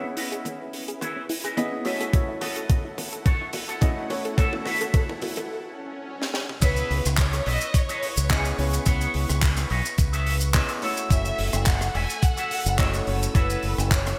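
An overdriven, thumpy electronic kick sits up front in this sleek, groovy nu-disco excerpt at 107 BPM in C# minor. It arrives at 2.1 seconds beneath a tight, dry funk kit with bright cymbals, a high-tuned snare, handclaps, shaker and toms, bathed in gated reverb. The opening build-up pairs an intimate baby grand piano, with its audible action noise and short sustain, against dark, soft-attack chamber strings and a punchy, detuned sawtooth pluck playing arpeggios, both strings and pluck moving under a filter sweep. Throughout, a clean, twangy electric guitar with an envelope filter and lush chorus carries a riff. Drum fills, a brief break and an electronic swell lead into the drop at 6.6 seconds, where a fingered electric bass with an envelope filter enters up front and a distant, expressive studio violin section takes the melody with vibrato, 12-bit sampler grit and digital delay. The harmony moves between C#m7 and F#m7, and a moderate hall reverb gives the bright 1980s-style digital production its space.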